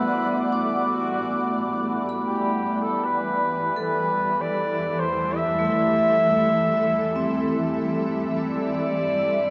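A serene, spacious ambient passage opens with a distant, roomy flugelhorn singing a classical-style solo melody up front, its line trailed by delay. Beneath it, a granular cloud pad holds sustained chords that feel blurred and slowly evolving, bright and close, with detuned unison layers and its own built-in reverb. A vibraphone struck with medium hard mallets ripples through metallic, ringing arpeggios with a slow motor vibrato and a boxy small-room character, also carried by delay. Far in the background, a resonant drone with moving overtones hums under chorus, phaser and built-in reverb before dropping away at 8.5 seconds. The harmony drifts from Em9 to Am7/E and settles on Em7 at 8.5 seconds, all bathed in a huge, wet reverb that gives this fragment of a longer piece its floating sense of space.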